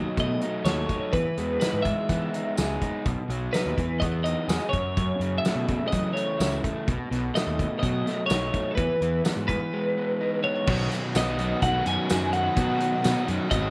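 A bright, twangy twelve-string electric guitar carries the melody from the first second, its clean, compressed jangle touched with slapback echo over a carefree indie rock groove at 126 BPM in a straight 4/4. Beside it, a crunchy overdriven guitar picks out an up-front riff, while a fuzzed, round fingered bass and a loose, roomy drum kit with a fat snare, tight kick, dark cymbals and tambourine join at 0.2 seconds. The kit sits distant in a studio room with a rolled-off top, and light reverb gives the whole band a studio ambience. The harmony moves through B7, Emaj7 and F#m7 in B mixolydian. At 10.7 seconds the music moves onto Badd9 as a very quiet, detuned sawtooth pad slowly blooms in thick chorus-laden chords and a biting second overdriven guitar adds a background riff with subtle chorus and slapback. The passage is cut from a longer piece and stops at 13.7 seconds.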